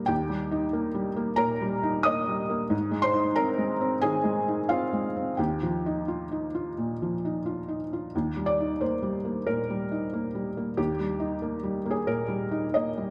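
Hopeful and tender, this brief neoclassical minimalist passage in Eb major moves at a loose, rubato 90 BPM as a solo felt-muted upright piano, soft, mellow and intimate with a short sustain, sits up front across a span from Eb2 to Eb6, stepping from Eb through Abadd9 and Ebadd9 back to Eb while a moderate concert hall reverb gives the close, natural tone a gentle sense of space.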